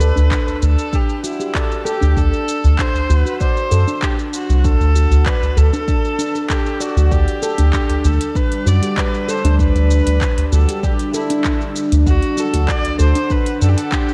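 Kamancheh, handpan, a round analog bass, an afro-pop drum kit and a faint quartz singing bowl all sound from the opening of this peaceful organic downtempo excerpt, set at 97 BPM in 4/4 with a straight feel in D mixolydian. The bowed kamancheh carries the melody with light vibrato, portamento and an airy, intimate tone, while the handpan rings out meditative arpeggios struck with the fingertips, each part trailed by its own delay. The up-front bass sits dark and sustained beneath them, and the drum kit adds handclaps, shaker and metallic hi-hats, joined almost at once by a very quiet, close udu and a deep electronic kick. At 7.1 seconds a warbling, nostalgic pad enters with detuned, lo-fi sustained chords treated with chorus, phaser and sidechain pumping. The harmony moves between G over D and D, and the whole mix floats in a dreamy lush hall reverb.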